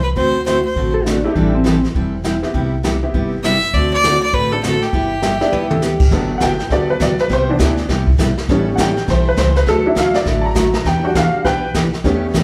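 A cheerful, swinging western swing excerpt in G major at 202 BPM opens with a nasal, bowed fiddle over thumpy gut-string upright bass, joined by bright picked jumbo acoustic guitar and dark, smooth brushed drums, while a clean, compressed lap steel slides in at 0.9 seconds and a detuned, jangly honky-tonk upright piano enters at 1.2 seconds before taking a solo from 6.1 seconds, all in a live room with lush studio reverb.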